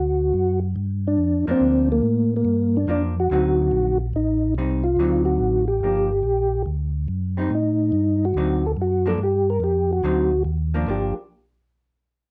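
A home cassette recording with faint mains hum and a modest small-room ambience frames this bluesy, smoky soul jazz organ trio excerpt in G minor, swinging at 143 BPM in 4/4 and turning toward G harmonic minor from 4.1 s. Up front, a soft, flute-like tonewheel organ with second-harmonic percussion carries the melody between Bb3 and Bb4, while a round, dark tonewheel organ holds down the bass, both colored by chorus vibrato and a slow rotary speaker. From 1.5 s a clean, picked hollow-body electric jazz guitar adds accompaniment through Gm7, Am7b5 and recurring D7b9 changes.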